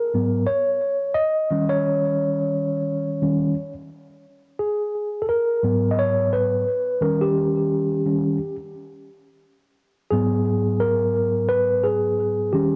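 Hip hop at 87 BPM in G# minor, this short, mellow and smoky cut from a longer piece features a tine electric piano playing alone from 0.0 to 12.8 seconds, sitting up front with a clean, warm tone heard through built-in speakers. Its chords move between G#m9, D#7 and G#m7 over a swung sixteenth-note feel, spanning G#2 to D#5. A cassette tape effect and tape echo color the piano, while light reverb and the home cassette recording give the whole a hazy, intimate character.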